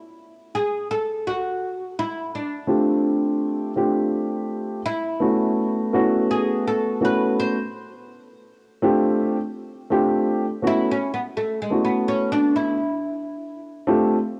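Mellow and cool, this swung 83 BPM hip hop fragment opens with a bright, woody, plectrum-plucked oud carrying the melody over suspended chords, joined at 2.7 s by a dark, smooth, vintage baby grand piano in accompaniment, both up front with cassette-tape character in a lightly reverberant home recording, before the oud takes a solo from 10.6 s.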